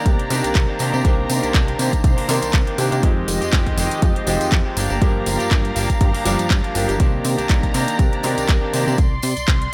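A brilliant, phased grand piano, a dark, woody violin section with vibrato and a clean hollow-body electric guitar riff open this sensual, funky filtered disco house clip, joined at 0.1 seconds by a plucky analog bass, a punchy up-front electronic kick, a house kit of handclaps and metallic hi-hats in studio reverb, and a dry tambourine in the background, while sidechain pumping moves the piano, strings, guitar, bass, hats and tambourine over a Cm9, Fm9, Gm7 progression.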